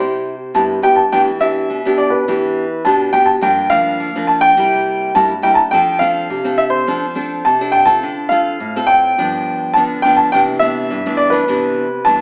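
A straight 4/4 samba pulse at 104 BPM drives this festive, joyful clip, which is cut from a longer piece in C major with tuning set to A4 = 435 Hz. A grand piano carries the melody between B4 and Bb5, its tone natural and up front, while a fingerpicked nylon-string guitar supplies the accompaniment from G2 to A4 with the warm, fresh-stringed sound of a classical instrument. Both parts play together across the full 12.2 seconds, the piano sitting louder than the guitar. The harmony moves from Cmaj7 into a longer passage beginning at 1.1 seconds that runs through Em7, Gm7, C7, F6, Dm7 and G7 before settling on Cmaj9 at 10.3 seconds. The whole recording is bathed in a wet large-studio reverb and heard from further back in the room, with a small-speaker character.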